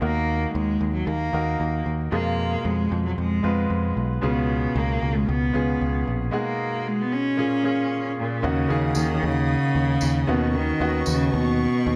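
A solo bowed cello carries the melody from the start, its rich, vibrato-laden tone smooth and even, over a brilliant grand piano accompaniment and a round, direct picked electric bass. This short cut from a longer piano-driven pop piece in straight 4/4 feels driving and dramatic, with the harmony moving through Ebm, Fdim, Db7 and Abm7/Cb before settling on Bbm7. At 8.4 seconds the music moves into a new section on Ebm7, and a lush studio string section enters with sustained, smooth-topped chords set well behind the lead parts. A jingly, band-limited tambourine with a vintage character joins at 8.9 seconds, the chords shift to Badd9/D# at 10.3 seconds, and the tambourine drops out at 11.2 seconds. Light reverb and a dark production frame the piece.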